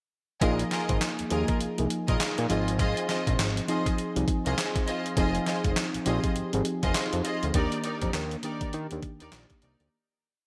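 At 0.4 seconds a gritty, pitched-down boom bap drum kit, with a thumpy kick, a snare layered with handclap and gated reverb, starts a hard-swung new jack swing groove at 101 BPM alongside a fat, nasal analog bass line with muted ghost notes. A round, chorused FM electric piano pushes drop-2 chords through Ab6, Fm7 and Ebmaj7, and a lush studio string section adds short syncopated stabs, set in plate reverb with a bright 1980s-style digital sheen. This punchy, confident R&B piece fades out from 7.5 seconds to its close at 9.9 seconds.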